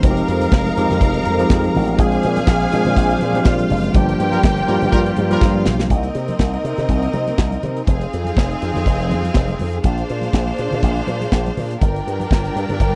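A punchy slap bass run through an envelope filter drives this danceable disco excerpt at 122 BPM in C minor, its bright, amped tone riding a lightly swung 16th-note feel alongside an up-front acoustic drum kit with a punchy kick and airy polish, and very quiet, damped congas underneath. Lush, woody strings hold sustained chords while a brighter, intense string section carries a second line, and a worn, slightly out-of-tune tine electric piano comps mellowly until 5.9 seconds. A distant, roomy horn section adds stabs from 4.3 seconds during a band accent and a drum fill that leads into the second section, all captured in a dry, close 1970s-style studio sound.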